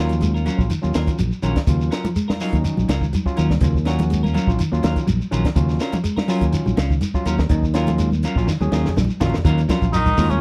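Afrobeat at 124 BPM in Eb minor, funky and hypnotic, built on an Ebm9 vamp where a round, up-front fingered bass, a compact cocktail drum kit with a high-tuned snare and punchy kick, grainy shekere, congas from 1.7 seconds, barky overdriven tine electric piano, hollow-body guitar stabs and dark spring-reverb guitar arpeggios groove through a dry, close 1970s-style small-room sound until a drum fill at 8.5 seconds brings in a buzzy metal-muted trombone melody and a raspy tenor saxophone second line at 9.9 seconds, just before this excerpt cuts off.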